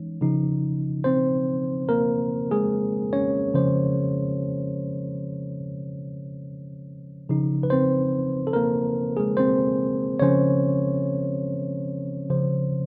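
A worn, slightly out-of-tune tine electric piano plays alone for the whole 12.9 seconds, its lightly overdriven tone sitting up front as if heard through built-in speakers, ranging from Db3 to Db5 over a Dbmaj9 chord. This short R&B excerpt in Db major moves at a relaxed 72 BPM in 4/4 with a gentle swing on the sixteenths, giving it a sensual, unhurried feel. The sound is dry and close, with the rough character of a home demo.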